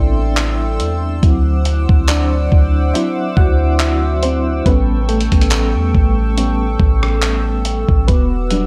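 A dark FM electric piano with tremolo takes the lead in this late-night, longing contemporary R&B clip at 70 BPM, moving through Am7, D9, A7 and Em9 over a shimmering, chorused pulse-width pad, a deep, boomy 808-style bass sitting up front, and a gritty, tape-warm soul sampler drum kit of thumpy kick, rim click, hi-hat and handclaps that enters at 0.4 seconds with a lightly swung sixteenth-note feel and the sound of a large room.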